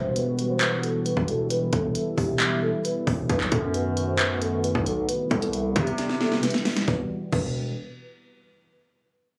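A half-time trap groove at 134 BPM drives this brooding, dark hip hop excerpt, with an up-front electronic kit of hard-clipped kick, sharp snare, crisp hats, handclaps and crash, plus a drum fill from 6.0 to 6.9 seconds. A saturated, aggressive 808-style bass with a noise layer and fast, decaying attack anchors chords that move from Emadd9 through B7 and Cmaj7, while a detuned, chorused analog pad with a slow attack and a sub octave sustains deep, moody harmony. A mellow vibraphone played with soft mallets rings out a metallic melody through tape echo, all under a filter sweep that runs until the new section at 6.9 seconds, captured on a phone in a club-like space with light reverb and compression.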